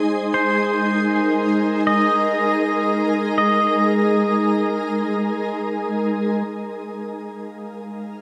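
Ambient, luminous and peaceful, this brief cut from a longer piece floats on a shimmering, ethereal pad of detuned, granular chords with an octave-up glow, while a calm organ-like drone hums in the background. From 0.3 to 5.7 seconds a bright, twangy pedal steel guitar carries the melody up front, its clean, compressed slide phrases shaped by volume swells and bathed in shimmer reverb and delay. A huge, wet reverb and a cassette-tape character surround the sound.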